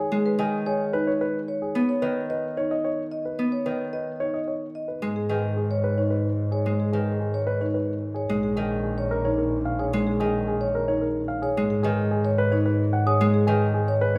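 A rich, bowed double bass is the standout, entering at 5.0 s with a smooth, even line and vibrato, up front in the mix as the music turns from B major to G# minor. This meditative, hypnotic excerpt of classical minimalist pattern music moves at 110 BPM in a straight 3/4, tuned to A4 = 441 Hz. A dark, mellow concert grand piano carries the melody, while a fingerpicked Celtic harp supplies ringing, close-sounding accompaniment in its lower range and a marimba played with medium mallets spins warm arpeggios. The chords move from G#m through A#m7 and back to G#m. At 13.1 s a bell-like, delicate celesta adds one bright, airy note. A moderate recital hall reverb gives the ensemble a natural sense of space.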